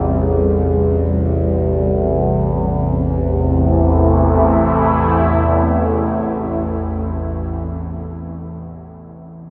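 Dark ambient drone in free time and A minor, this excerpt from a longer piece feels ominous and cavernous. An overtone-sweeping drone sits low and up front from 0.0 to 7.5 seconds, its wave-folded tone full of moving overtones and a shifting notch, fading in slowly and ringing out on a long release, with chorus and its own reverb. Above it, a sweeping resonant pad holds sustained chords in a detuned, bright voice that keeps evolving, rising through a filter swell and carrying chorus until 8.1 seconds. The harmony moves from Fsus2 at the opening to A minor at 2.7 seconds, where a second section begins. A huge, wet reverb with a long decay surrounds the sound and deepens its sense of vast, dark space.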